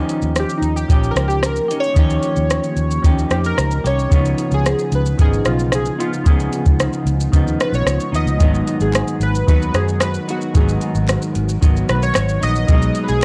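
A straight 4/4 pulse from a soft vintage rhythm box with a deep kick, metallic hats, rim click and shaker anchors this nostalgic, hazy bedroom-pop fragment, where a round, foam-muted fingered bass and a dark semi-hollow electric guitar with subtle chorus and warbly pitch drift support a sawtooth analog keys melody soloing through phaser and chorus, while a very quiet granular cloud pad blurs in at 0.9 seconds over chords moving from D#9 through C#9 and G#m7 to B6, and crisp, close handclaps join at 8.9 seconds beneath a gritty cassette-tape sheen.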